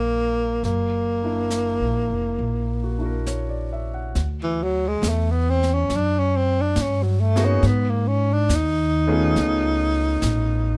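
Wistful and melancholic, this slow swung jazz fragment at 69 BPM opens on a rootless Ebm9 chord, with an up-front breathy tenor saxophone carrying the melody over an intimate concert grand piano, whose action noise can be heard, and a woody pizzicato upright bass. A soft brush kit joins at 0.6 s with brushed snare and hi-hat. From 4.2 s the mellow saxophone takes a solo full of vibrato and scooped notes, all captured dry and close with fine detail.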